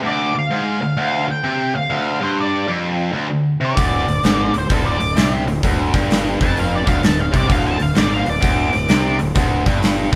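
Gritty and brooding, this short cut from a longer piece mixes blues rock power trio and southern rock over a swung 4/4 feel, sitting on a single D minor chord throughout. A tight, bright distorted guitar opens the track with a double-tracked, picked riff in its low register, placed up front, while an octave-fuzz lead guitar with a dark, fuzzy tone and wah carries the melody in a higher range above it. At 3.8 seconds a fingered electric bass enters with an overdriven fuzz, alongside a huge acoustic arena drum kit whose punchy kick, medium-tuned snare and hi-hat sound big and forward. The lead guitar stops at 9.2 seconds, leaving the riff, bass and drums to carry on to the end. A moderate stone room reverb wraps the band, which plays live together in one room.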